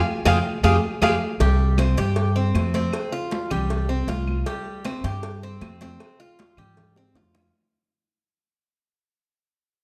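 A growly, thumpy upright bass sits up front in this danceable, sultry Cuban son and guajira groove, joined by a metallic, picked tres playing arpeggios on double strings, ringing high-tuned congas struck with hard hands, tight cowbell and bongos, and woody claves in the background, while a bowed violin offers a brief expressive phrase with vibrato and portamento that ends at 1.1 s; a band accent and drum fill open the passage, another fill arrives at 7.0 s, and the music fades out from 1.4 s within a moderate recital-hall reverb.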